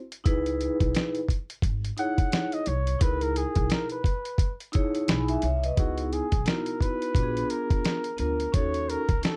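This recording has a dark, warm production with light reverb, a smoky, nocturnal slice of jazz-hop cut from a longer piece. It moves at 87 BPM in 4/4 with a swung sixteenth-note feel in C# dorian. A dusty, sampler-style drum kit sits up front from the opening, its thumpy kick, medium-tuned snare and hi-hat sounding compressed, gritty and tape-warm. Soft-mallet vibraphone rings with a metallic, mellow tone and slow motor vibrato, while pizzicato upright bass on steel strings adds a woody acoustic low end. From 2.0 seconds a close-miked trumpet with a bucket mute carries the melody up front, veiled and muted with light jazz vibrato, as the harmony passes from C#m9 to A#7b9 and D#m7b5 near the close.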